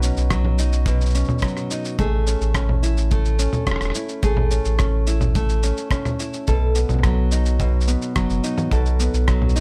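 Dry, with little reverb, this folktronica clip from a longer piece has a playful, hopeful mood and a straight four-beat feel. Up front, a classical nylon-string guitar plays fingerpicked arpeggios through a delay, while a round, mellow sine sub bass sits deep beneath it over the chords Badd9, Amaj7 and B7. Further back, a muffled, pitched-down sampler-style kit of electronic cabasa, rim click and congas runs alongside a tight, natural acoustic kick drum that enters at 0.3 seconds.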